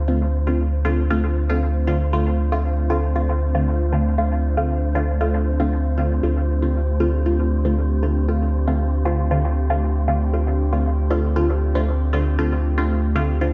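Meditative and nocturnal, this dub techno excerpt moves at 117 BPM in D minor over a sustained Dm7, with a round, deep sine sub bass up front, muted, detuned sawtooth chord stabs plucked through a filter and bathed in phaser and dub echo, a breathy, chorused pad carrying a filter sweep and a gritty vintage sampler edge, and a dark, wind-like tuned noise texture sitting in the background inside light digital ambience.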